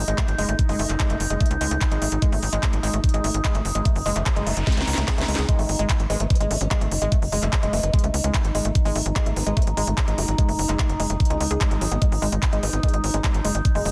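Hypnotic and psychedelic, this psychedelic trance excerpt runs at 147 BPM in straight 4/4, rooted in G# phrygian around a G#5 power chord. A tight, punchy sequencer bass with a nasal, sawtooth edge sits up front with a knocking electronic kick, while a drum kit adds a cracking snare, crisp hats and handclaps, the kit re-recorded in a small room. A woody, wave-folded pluck carries the riff with a percussive, ring-modulated bite, colored by chorus, cassette tape character, delay and sidechain pumping. Throughout, a resonant drone with moving overtones holds sustained chords, breathing with its own chorus, built-in reverb and pumping. A quiet noise sweep runs from 4.4 to 5.5 seconds alongside a drum fill, and from 6.1 seconds a very quiet, wobbling formant-filtered bass joins as a second line. The digital ambience and dense, heavily limited master give the track a modern, compact punch.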